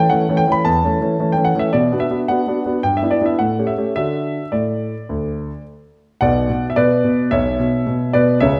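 A clear concert grand piano carries this graceful, cheerful classical-period sonatina alone, its natural, up-front tone reaching from a deep bass at B1 to B5 in D major at 109 BPM in a straight 4/4. The harmony moves from A through B minor, E minor seventh and A7 to settle on D at 4.0 seconds, then a new passage opens on B minor at 6.2 seconds. A moderate recital hall reverb surrounds the instrument in this short cut from a longer piece, tuned to A4 = 442 Hz.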